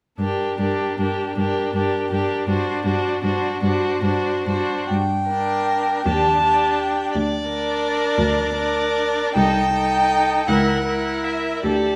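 A string quartet sits in a recital hall with a reverberant tail of about 1.4 seconds, heard in this passage cut from a longer piece. It is a slow, solemn and yearning romantic movement in G minor, moving freely with rubato in 6/8 at roughly 43-59 beats per minute, counted in dotted quarters. The first violin carries the melody between Bb4 and A5 with a rich, distant tone and smooth, even bowing with vibrato, while the second violin holds a lower line in the same lush, steady manner. Close by, the viola's accompaniment has a full, vibrant body, and the clear cello anchors the bass low in its register, both bowed with vibrato. All four play together from 0.2 s to the end, with a new section beginning at 4.9 s as the harmony moves from G minor through Ebmaj7, Bb/D and Adim/C to a tense F#7/C#.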